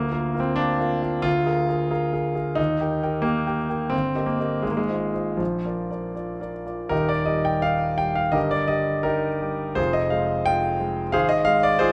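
Romantic classical character piece for solo piano, passionate and hopeful, unfolding in a flexible rubato two-beat metre across this short excerpt. The concert grand sits up front and intimate, its deep bass, long sustain and audible action noise captured in polished, present detail within light reverb. A second section begins at 6.9 seconds, and the passage ends at 11.9 seconds as though cut from a longer work.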